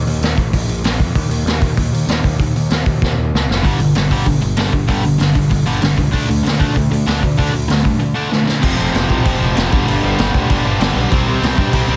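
Punk rock at 192 BPM, raw and angry, cut from a longer piece: a growly fuzz bass opens alone and the up-front, gritty garage drum kit with its punchy kick joins almost at once, then two bright, overdriven picked guitars enter behind them at 3.6 seconds after a drum fill, churning through power chords such as G5, D5 and F5 in a dense, dry, heavily limited mix.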